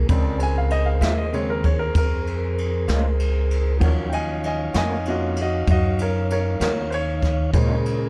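Mournful and brooding, this fragment of a slow 12/8 blues in Bb minor at 65 BPM moves from Bbm7 to Ebm7 and back, with the baby grand piano soloing throughout over a woody, up-front pizzicato upright bass and a roomy brush kit with a boomy kick, dark cymbals and a medium-tuned snare. A soft, flute-like tonewheel organ holds sustained chords through a slow rotary speaker, its key click audible, while from 1.0 s a fingered electric guitar through a small old amp adds slightly broken-up, lo-fi tremolo accompaniment in the background. The small room and dark, warm production give the whole a close, smoky intimacy.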